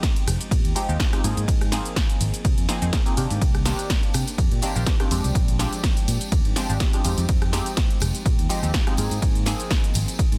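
Sensual and funky, this filtered disco house excerpt moves at 124 BPM in 4/4 with a light swing on the sixteenths, cycling through rich chords like Fm9, Ab69, Cm9 and Bb13. An up-front, tape-warm electronic kick anchors a punchy analog drum machine of hi-hat, ride, rim click, shaker and snare, while a fingered electric bass enters at 0.3 seconds with an amped, warm and punchy tone and pumps against the kick. A detuned sawtooth polysynth comps with chorus, phaser and filter sweeps, a distant tambourine with egg shaker and group handclap joins in the background at 3.4 seconds, and the dry mix is densely limited.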